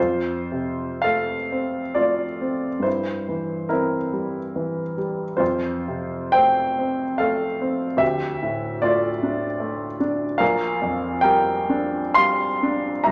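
A clear, intimate grand piano carries this short romantic nocturne alone, sitting up front with its natural tone and an audible action noise that brings the listener close to the instrument. Cut from a longer classical piece, the passage moves in a gentle 3/4 with a flexible rubato feel, its tempo drifting between roughly 53 and 78 BPM. The mood is nostalgic and serene, grounded in F major, and the harmony travels from F through C7/G, back to F, then to D minor before resting on Gm7/Bb at 10.4 seconds. The piano spans a broad register from deep Bb1 up to C6 across the 13.1 seconds. A wet, large studio reverb lends the instrument a spacious halo around its otherwise close, detailed presence.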